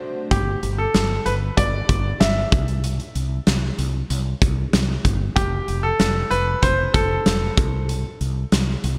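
A bright, polished 1980s-style digital production set in a lush hall, this uplifting, romantic pop excerpt moves at 95 BPM in a straight 4/4 in G mixolydian, opening on a band accent before the piano, bass and drums enter together at 0.3 seconds. A brilliant concert grand piano with a short sustain and digital delay carries the melody between G4 and E5 until 7.5 seconds, over a round, dark fretless electric bass played up front. The big rock drum kit sounds smooth, with a punchy kick, a medium-tuned snare, rolled-off top and gated reverb, while the chords move from G5 to C5 to F before the harmony drops away at 7.6 seconds.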